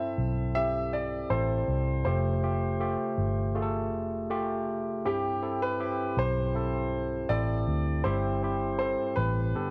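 Pop ballad in C major at 80 BPM in a straight 4/4, heartfelt and tender, cut from a longer piece and tuned to A4 = 444 Hz. A clear, open concert grand piano carries the melody up front, while a bright, barky tine electric piano supplies clean, direct accompaniment. A dark, foam-muted fingered electric bass, round and punchy, enters at 0.2 s and stops at 9.5 s, all set in a moderate echo chamber reverb over chords moving from C6 to Fadd9, C and C/G.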